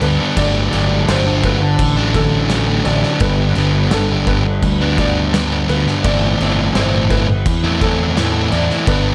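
This short post-rock cut opens with the full band at once, a sludgy distorted guitar riff pushed up front over a fuzzy, round, fingered electric bass and a loose indie drum kit, all moving at a straight 85 BPM in 4/4. The mood is euphoric and soaring, carried by the overdriven guitar's warm, picked grind and the punchy, amped weight of the bass beneath it. Tucked in the background, a felt-muted upright piano plays soft, mellow arpeggios with audible action noise, its thin felt tone trailed by tape echo. The acoustic drums bring a punchy kick, a medium-tuned snare and dark crash cymbals, with a pumping studio-room sound and a rolled-off top. The harmony moves from D7/G at 0.4 seconds to G at 3.2 seconds and Am7/G at 6.0 seconds, all set in light reverb and small room ambience.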